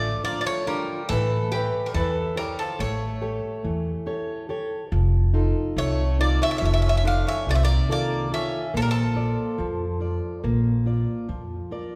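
A bright, metallic Greek bouzouki carries the melody up front in this dark, melancholic piece of Greek folk music, its picked double strings ringing with some octave doubling between G4 and F5. A second bouzouki plays a lower line beneath it, rounder and softer in tone, while a fingerpicked, plugged-in jumbo steel-string acoustic guitar fills out the accompaniment with a full-bodied sound and the occasional finger squeak. An upright bass, plucked pizzicato and sitting prominently in the mix, gives a woody, thumpy foundation from its steel strings. The band moves in a straight 9/8 at 141 eighth-note beats per minute in A phrygian dominant, with the harmony passing from Dm to A7 at 1.1 seconds, to F7 at 4.9 seconds and on to Bb. All four parts sound together throughout this short passage cut from a longer piece, and the whole band is bathed in the wet reverb of a recital hall, church or concert hall.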